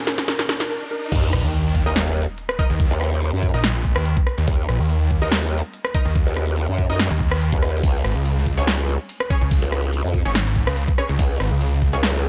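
This short excerpt of menacing, chaotic heavy wobble dubstep in Eb minor opens at 143 BPM in a half-time feel with a soft, felt-muted upright piano carrying a tape-echoed melody over lush supersaw chords that pump against the sidechain, while a riser and a punchy big-room drum kit with crisp hats build toward the drop. At 1.1 seconds the drop hits with a sub impact and an overdriven, knocking electronic kick, as a growling, chorused wobble bass and a snarling, resonant distorted saw bass take over up front. Bold orchestra-hit-like synth stabs with 12-bit sampler grit and tape echo sit behind them in a dry mix.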